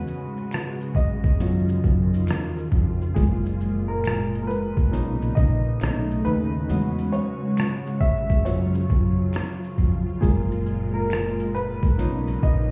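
Mellow and cosy, this short lo-fi hip hop excerpt at 68 BPM in F# major sways with a swung 16th-note feel as a woody, slightly detuned upright piano takes the lead through tape-softened jazzy chords like D#m9 and F#maj9, over warm sawtooth string-machine cellos with a sub-octave and ensemble chorus, a round, hollow-sounding fretless electric bass, and an up-front, pitched-down sampler drum kit with a thumpy kick, hi-hat, rim click and shaker, while a very quiet finger snap sits in from 0.5 s, all heard muffled as if through a wall into a stone room.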